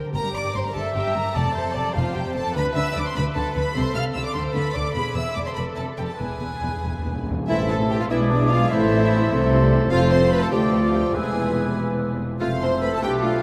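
Stormy and urgent, this quick classical-period movement for symphony orchestra in A minor moves at 99 BPM in a rubato 6/8. It opens with the strings: a warm violin section carries the high melody over a second violin line, dark violas, a warm cello section and a dark double bass section, all bowed sul tasto with light vibrato and an intimate closeness. Soft-mallet timpani bring a round fill from 6.2 s, and at 7.5 s the winds and brass arrive in the background: hollow, airy flutes, a clear oboe, a mellow clarinet and a bassoon, with dark French horns sustaining chords and a distant trumpet adding stabs, all washed in the long, wet reverb of a vast cathedral.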